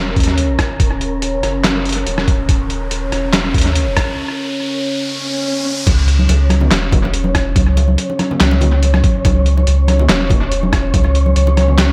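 Deep dubstep in a brooding, cavernous half-time swing, cut from a longer piece, where a dark, detuned analog pad with chorus and a round, soft sub bass hold beneath a breathy wind-like noise texture while a muffled, pitched-down kick and tape-echoed trip hop kit of snare, hi-hat, rim click, handclaps and crash carry a build-up, with an electronic riser from 1.5 seconds, into the drop at 5.9 seconds, where ringing, low-tuned congas enter and the chords move to C#m in an echo-heavy mix.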